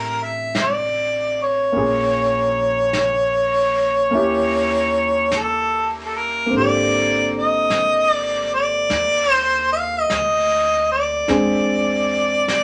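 A mellow harmonica carries the melody of this intimate, tender jazz ballad at a slow 50 BPM with a swung feel; its scooped notes and light vibrato sound distant and roomy yet sit up front. A concert grand piano with deep bass supplies chords such as Bbm7, Eb7b9 and Abmaj9#11. A woody, growly pizzicato upright bass plays in the low register. From 0.5 seconds a vintage brush drum kit joins on brushed snare and hi-hat with a rolled-off top, in a short passage from a longer piece heard in a small, reverberant room.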